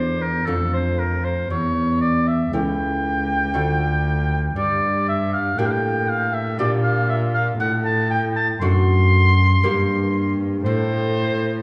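A solo oboe carries the melody in this short fragment of a baroque-style sonata movement in triple time, its tone warm with a light vibrato and sitting up front even though it sounds distant and roomy. Beneath it, a rich, smooth cello played by one bowed player holds down the bass line with an even vibrato. A delicate, fingerpicked lute fills in the continuo accompaniment, its nylon double strings and some octave-doubled courses giving a warm, acoustic sound. The mood is grave yet flowing, and all three parts play together from the start through 11.6 seconds, as the passage is cut from a longer piece. The recital hall reverb is wet and lingering, placing the listener further back in the room.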